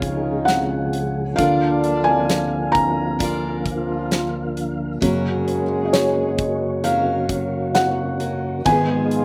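A big-room arena drum kit with a fat snare and punchy kick sets a straight, slow 66 BPM pulse in 4/4 for this tender, hopeful pop ballad in F# major, where an intimate, boxy felt-muted upright piano carries the solo up front with audible action noise, a jumbo steel-string acoustic guitar picks arpeggios through slapback echo with finger squeak, a flute-like tonewheel organ holds sustained chords through chorus vibrato and a fast rotary speaker, and a French horn section with light vibrato adds a classical-style second line, in a dry, outdoor sound across this 9.2-second fragment of a longer piece.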